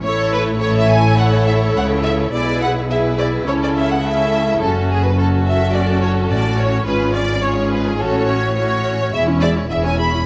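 Spirited and lively, this quick classical-period movement for string orchestra in A major moves at 106 BPM, with a warm, softly attacked violin section carrying the melody in the background while a focused second violin line and a close viola accompaniment sit up front, all over a smooth, even foundation of lush cellos and distant double basses, the whole captured with close, detailed microphones and light reverb as the harmony travels from A toward F#m and C#m/E in this brief cut from a longer piece.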